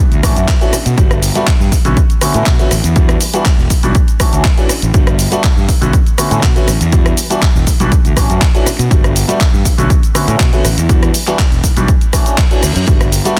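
A round, overdriven fuzz bass and a layered house drum kit of cabasa, handclaps, hi-hat and rim click open this joyful, feel-good slice of filtered disco house at 121 BPM in D major, joined almost at once by a punchy, tape-warm electronic kick up front and a clear concert grand piano colored by a phaser. The bass, piano and kit percussion breathe with sidechain pumping as the piano cycles through Dmaj9, Gmaj7, Bm7 and Em9 chords over the bass's dark low end. A reverse cymbal rises from the background at 12.2 s, all within digital ambience and a dense, heavily limited modern master.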